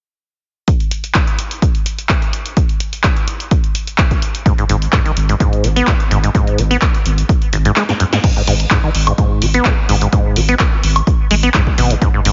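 Acid house at 127 BPM in G# minor pentatonic, trippy and driving, opens at 0.7 seconds with a punchy, tape-warm electronic kick and an analog drum machine of crash, handclaps, hi-hat, snare and woodblock, before a squelchy, resonant sawtooth acid bass riff with tube saturation, subtle chorus, cassette tape colour, dub echo and sidechain pumping enters at 4.5 seconds, joined at 4.7 seconds by a deep, thick triangle sub bass holding G#1. After the kick drops out for a drum fill at 7.8 seconds, a filter sweep on the acid bass carries this heavily compressed, radio-like fragment of a longer piece to its close.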